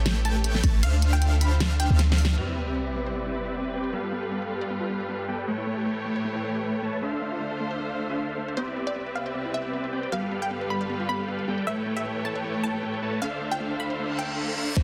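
At 155 BPM in 4/4 with a half-time feel and a light swing on the sixteenths, this euphoric, lush future bass passage in C major opens on a drop, cycling through A7, Dm7, Cmaj7 and G7. A pop kit with a fat, filtered snare and a deep, boomy 808-style bass carry the opening, joined by a punchy electronic kick that hits briefly before dropping out at 0.8 seconds, while a soft, airy lead floats high arpeggios in the background. After the drum fill and band accent, an electronic sub drop lands at 2.4 seconds. The groove then thins to the huge, detuned supersaw chord riff, bright and up front under lush chorus, over a bowed string ensemble with vibrato and portamento, and a background pluck spinning delayed arpeggios. A wave-folded unison pluck carries the melody with dub echo, returning at 8.6 seconds, and the synths and strings breathe with sidechain pumping until a reverse cymbal rises from 14.1 seconds in a dense, heavily limited mix with light digital reverb.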